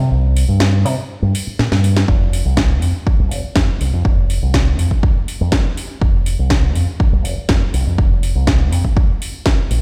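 A fingered electric bass run through an envelope filter anchors this nu-disco excerpt, its dark, round tone sitting up front from the very start and roaming between F1 and C3. The mood is cosmic and groovy, moving at 122 BPM in a straight 4/4 feel. For the opening 2.1 seconds the track sits in a drop with the kick held out, as a house drum kit of cracking snare and metallic hi-hats slips in at 0.4 seconds and closes the passage with a fill. The electronic kick arrives at 2.1 seconds, punchy and tape-warm, sitting up front in the groove. The instruments themselves carry little reverb, yet the whole sounds as if played through a big sound system in a bare stone room, and the piece is cut from a longer track.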